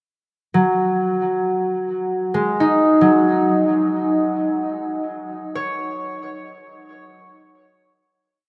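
A huge, wet reverb with a decay of 7.9 seconds fills this short, melancholic and spacious ambient piece. A solo concert harp, up front and warm, is fingerpicked from 0.5 seconds, its ringing notes carried by a diffuse ambient delay as three slow loops of unequal length drift against each other. The whole piece fades out from 5.2 seconds to its end at 8.5 seconds.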